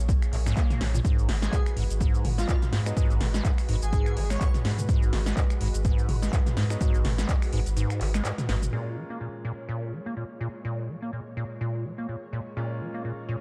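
Raw and gritty, this excerpt of acid house at 125 BPM in Bb phrygian swings its 16ths and is tuned slightly flat to A4 = 438 Hz. A squelchy, resonant square-wave acid riff with filter sweeps runs throughout over a thick, detuned sawtooth pad with chorus and a round sine sub bass that drops out at 8.7 s. A punchy, overdriven kick sits up front until 7.4 s beside an analog drum machine with metallic hats, snaps, claps, shaker, toms and crash, all under low-pass filtering in a short small room, while an airy, dreamy sine lead with vibrato and delay floats briefly early on and a brilliant grand piano with audible action noise adds delayed stabs, mostly from 6.7 s, in a dark, dry production.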